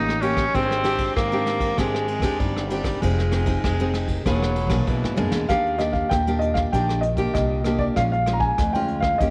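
A straight 4/4 samba and choro groove at 97 BPM in Eb major sets a festive, joyful mood in this cut from a longer piece, with bright, fingerpicked nylon-string guitar, growly pizzicato upright bass and a smooth, dark brush drum kit supporting a breathy, subtoned tenor saxophone with vibrato that plays a second line until 5.5 seconds, as a drum fill enters at 5.2 seconds. After this, a mellow, intimate grand piano with audible action noise takes the melody at 5.5 seconds, the whole mix set in a moderate echo chamber reverb.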